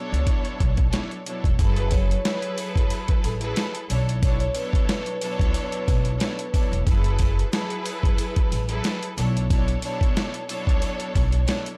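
Boom-bap hip-hop at 91 BPM in F# minor, this reflective, dark piece of a longer track rides a lightly swung 4/4 groove over a dry, gritty hardware sound. A dusty, sampler-style drum kit sits up front, its thumpy kick, medium-tuned snare and hi-hat compressed and overdriven, while a woody pizzicato upright bass anchors the low end. A lush, bowed string section with vibrato carries the accompaniment through the cassette tape and filtering that narrow its tone, moving between Bm11 and F#m11 chords. At 1.6 seconds, faint, jingly sleigh bells appear as if from a distant large room, and at 1.8 seconds a mellow vibraphone played with soft mallets takes the melody, ringing with slow motor vibrato and tape echo until 6.8 seconds.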